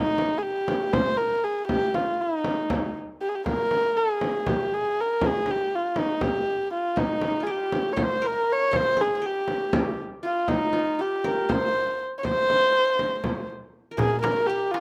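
A dark, intimate kamancheh opens at 0.0 s with a longing, hypnotic melody in C minor, its close, up-front bowing soft in attack and airy, with light vibrato, gliding portamento and a slapback echo. A deep, large frame drum joins almost at once, carrying this Turkish makam ensemble in 7/8 at 239 BPM in eighths. At 7.0 s a bright-edged qanun adds a fingerpicked second line in the background, also touched by slapback echo, and a crisp metal-shelled darbuka struck with hard hands enters only at 14.0 s, all within an outdoor recording carrying little reverb.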